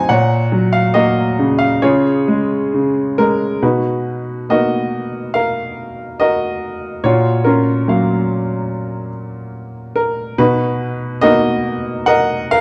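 Tender and warm, this short excerpt of lyrical classical solo piano moves at a rubato 71 BPM in 4/4, set in D-flat major with a tuning of A4 = 438 Hz. A clear, natural baby grand sits up front for the full 12.6 seconds, its short sustain ringing across a range from Bb2 to Bb5 as the harmony drifts from Gb/Bb and Db into Bmaj7 and F#maj7/A# chords after 3.6 seconds. A moderate recital hall reverb and a dark, warm production frame the sound.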